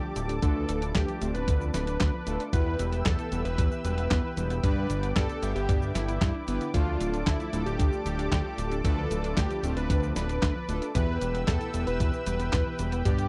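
Italo disco with a melodramatic, danceable pull, this short excerpt from a longer piece moves in a straight four-four over a Dm, Em and G progression. A thick, detuned unison lead carries the melody with a mellow vibrato and tape echo, while a lush, warbling pad holds sustained chords high above it with a slow attack and chorus. A very quiet, round analog pluck spins arpeggios in the middle register, and brassy synth stabs sit in the background, nasal and dark with chorus and a vintage 12-bit sampler grit. From 0.2 seconds a fat, saturated sawtooth bass sits up front, joined by a dusty soul sampler-style kit of snare, hi-hat, handclaps and cabasa, with a thumpy electronic kick entering at 0.4 seconds. The drums sound compressed and gritty, re-recorded in a large room, while the overall mix keeps a dry, close 1970s studio character with little reverb.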